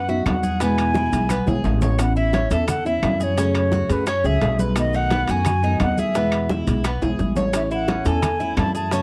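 An airy, tongued concert flute melody with vibrato opens this relaxed, danceable Cuban son and guajira excerpt over metallic, double-strung tres arpeggios and a dark, thumpy gut-string pizzicato upright bass set up front, joined almost at once by classical thumb-plucked nylon-string guitar, compressed, saturated thick-skinned congas, very quiet round, low-tuned bongos, grainy maracas and woody claves in the background, and ringing metal-shell timbales, with drum fills at 1.1 s and 7.0 s, all captured in a dry, close 1970s-style small-room sound.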